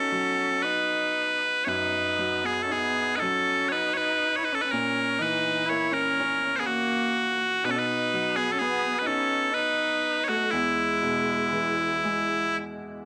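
Celtic folk slow air in a pastoral, nostalgic mood, this brief excerpt drifts at about 61 BPM in a rubato 3/4 with uneven beats, as piercing, up-front bagpipes carry the melody with a slapback echo over a rich, bowed viola second line with vibrato and a woody upright piano accompaniment that rings on to 13.1 seconds, moving through B, A#dim, B and E in a light reverb.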